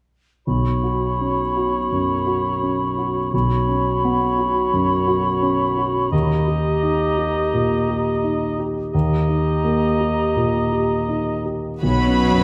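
In a free, rubato 4/4, this hopeful, uplifting cinematic passage, cut from a longer piece, rests on a dark concert grand piano with deep bass up front from 0.5 s, while a mellow clarinet, a distant cor anglais with light vibrato and a hollow, pure-toned flute with a crisp attack carry second lines over a Bsus2 to D# harmony, before lush bowed violins take the melody at 11.8 s alongside a second violin line, a rich viola accompaniment and a focused cello bass in the background, all in a wet scoring-stage reverb.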